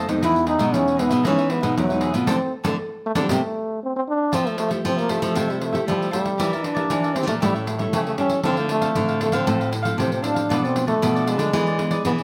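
A warm, jazzy solo trombone carries the melody from the first moment with vibrato and scooped notes, over a crisp picked cavaquinho, a bright, up-front fingerpicked classical nylon-string guitar and a second, full-bodied nylon-string guitar holding down the bass in the background, with a jingly pandeiro played with hard hands joining at 0.1 s. In this lively, festive samba and choro fragment, the band hits accents together between 2.3 and 4.3 s before a new section opens at 4.3 s with richer jazz-tinged chords. The acoustic instruments sit in a moderate large-studio reverb.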